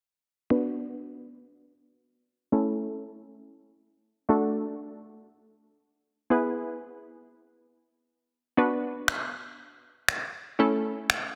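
A hollow, bouncy square-wave pluck sits up front through this confident, energetic dance-pop excerpt, its detuned, chorused tone bright, with a fast attack and a decaying tail as a filter sweep runs across it over a Bm, A, D, E progression. Electronic finger snaps, layered and tape-tinged with soft clipping, arrive at 9.1 s and stop at 11.2 s. A lush digital hall reverb surrounds the parts, and the dense, heavily limited master gives the cut a modern sheen.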